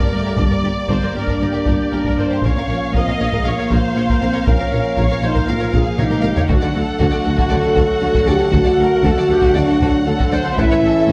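A moderate scoring-stage reverb gives this short passage of epic orchestral film score its hall-like depth, while a close, dry taiko ensemble struck with heavy sticks enters at 0.4 seconds and drives a heroic 118 BPM in 4/4, with a fill near 6.0 seconds. Dark, distant French horns carry the sustained chords alongside a background trombone section, and a mellow tuba, very quiet double basses and very quiet cellos hold the bass. On top, a lush violin section sings the expressive, vibrato-rich melody with a soft attack, a focused second violin line sits behind it and rich violas fill the middle, all moving through G minor, B-flat minor, D and A.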